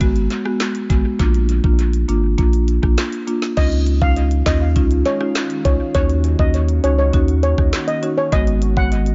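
A dry, echo-heavy mix with a dark, rolled-off top carries this bouncy, hypnotic dancehall excerpt, where an up-front electronic drum kit with a knocking kick, woody snare, smooth hi-hat, rim clicks, handclaps and crash cymbal takes on gritty vintage-sampler crunch and tape echo over a round, deep sine sub bass and a close-miked padauk marimba, before a soft, shimmering steel pan lead with tape echo enters at 3.6 seconds and a glassy, ethereal FM pad with chorus and sidechain pumping drifts in behind it at 4.4 seconds.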